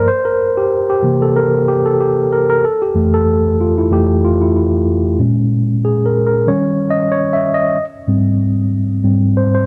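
A mellow, clean tine electric piano plays alone and up front, its tone coming through built-in speakers as it moves through C7, Fmaj7, Bbm7, Eb7 and Abmaj7 over a lightly swung soul groove in 4/4. The mood is bittersweet and silky. A light digital reverb surrounds the piano, and the dark production shows some lossy compression artefacts across this 9.7-second fragment of a longer piece.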